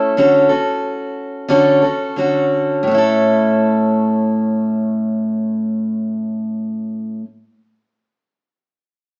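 In a straight 4/4 that slows down over the first 2.9 seconds, this short, sunny and heartfelt pop fragment features a picked steel-string acoustic guitar, full-bodied and up front with fresh strings and audible finger squeak, moving from Dmaj7 to A at 2.9 seconds within a moderate large studio reverb and a live-room, small-speaker sound.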